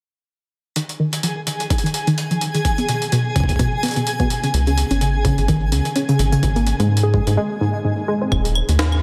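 A dreamy, reverb-soaked mix opens this intricate, glitchy IDM excerpt, which is cut from a longer piece and moves at 127 BPM in 4/4 with a light swing on the sixteenths. A warbling, lo-fi pluck, detuned and wave-folded, arrives at 0.8 seconds to spin arpeggios under a filter sweep, treated with chorus and delay and sitting up front. Alongside it comes a gritty, pitched-up jungle-style sampled kit of claves, hi-hat and a medium-tuned snare, overdriven and re-recorded in a large room, soon joined by a thumpy, overdriven electronic kick. A twinkling granular texture adds a sparkling, octave-up shimmer with its own reverb and subtle chorus, while a rubbery, hollow square-wave bass enters at 4.5 seconds, dark and bouncy. The harmony drifts from Ebsus4 through Abm/Cb to Db5 before a break at 7.4 seconds, with the bass and sampled kit carrying on to the close at 9.0 seconds.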